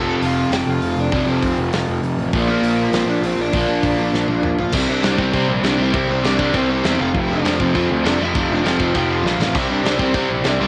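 A bright, double-tracked crunchy guitar riff up front, a growly fuzz bass and a bluesy distorted lead guitar melody open this upbeat, rebellious punk rock excerpt at 199 BPM in C mixolydian, with a loose indie drum kit (punchy kick, medium-tuned snare, rolled-off top) joining at 0.2 s in a half-time feel that lasts until 4.7 s, closing with a drum fill from 4.1 s, and the whole mix carries the dry sound of a home recording on cassette.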